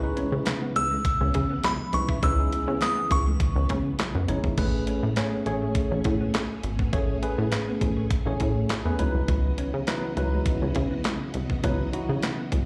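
Early-eighties boogie funk at 102 BPM in C# minor with a danceable, late-night mood, heard as an excerpt of a live gig through the venue's PA in club reverb, where a punchy, wave-folded analog bass and a thumpy, tape-warm 8-bit drum machine with crash, handclaps, hi-hat, kick and snare sit up front, a worn, slightly out-of-tune electric piano with light overdrive and slapback echo carries the accompaniment over C#m9, Amaj9 and C#m11 chords, a lush string machine and a dark, clean, fingered electric guitar riff hang in the background, a tinkling FM bell melody sparkles until 4.0 seconds, and very quiet, thin-skinned congas play from 0.5 to 4.4 seconds.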